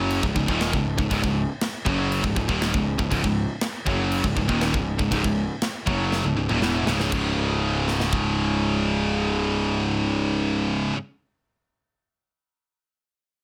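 Dark and heavy, this straight-time metal excerpt pairs an up-front, bright high-gain guitar riff with an overdriven electric guitar set back in the mix, over a round, punchy fuzz bass and a tight, polished acoustic drum kit with bright cymbals and an airy big-room character, while a very quiet, double-tracked semi-hollow guitar adds a warm layer from 3.1 seconds, a drum fill at 6.1 seconds leads into a new section built on a power chord, and the drums drop out at 8.2 seconds, leaving the guitars and bass in a dry mix.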